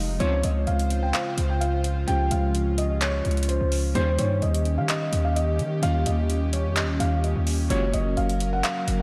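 A dark, eerie half-time trap hip hop excerpt in which a punchy, heavy 808-style bass sits up front under electronic trap drums with metallic hats and handclaps, while a felt-muted upright piano carries a soft, intimate melody through tape echo with audible action noise. Glassy digital keys sit in the background as a breathy, warbling detuned pad with chorus sustains the chords, and a mellow brass ensemble marks the chord changes with brief stabs at 0.2, 4.0 and 7.7 seconds, all set in a dreamy mix soaked in lush hall reverb.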